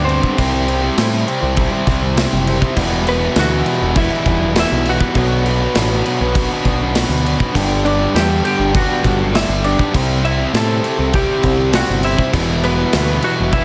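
A light reverb gives this cut from a longer alternative rock piece a sense of space, with a big acoustic drum kit up front in a studio room, its boomy kick, medium-tuned snare and crash cymbal arriving at 0.1 seconds. Beside the drums sits a growling picked electric bass, dark, round and punchy with overdrive, played direct and amped. Three electric guitars play riffs in the background: a biting overdriven part with a warm tone, a thick fuzz guitar with a bright edge, and a tight, double-tracked distorted guitar. Over them, a lightly driven lead guitar carries the melody with a slightly broken-up, compressed sound. The harmony moves through C, Em, Bm and G in a straight 4/4 feel, and the whole passage stays in one section, a cathartic and bittersweet stretch of the quiet-loud style.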